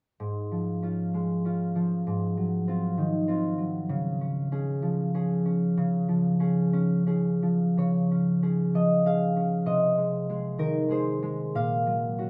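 A rubato lilt in three gives this short classical passage for solo concert harp, cut from a longer piece, a graceful and peaceful flow. The harp is thumb-plucked, warm and ringing, and sits up front in light reverb, playing alone from 0.2 to 12.3 seconds. A new section begins at 7.8 seconds.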